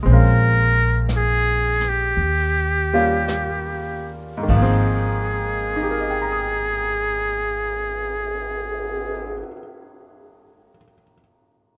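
The rhythm is a slow, swung 4/4 that eases back through the first 4.5 seconds, in a brief cut from a longer jazz ballad with a tender, intimate mood. A trumpet with a metal mute carries the melody up front, its buzzy, thin, brilliant tone dressed with vibrato and scooped notes in a close-miked, jazz-style solo voice. Beneath it, a plucked, steel-strung upright bass sounds woody and growly. A brushed drum kit sits lower in the mix, with dark cymbals, a boomy kick and a natural small-room character. A bright upright piano with audible action noise and a slightly detuned edge plays accompaniment, moving from Bbm9 through Eb9 to an Ab69, and it rings on alone until 11.8 seconds after the other parts stop. The sound is dry and immediate, with little reverb.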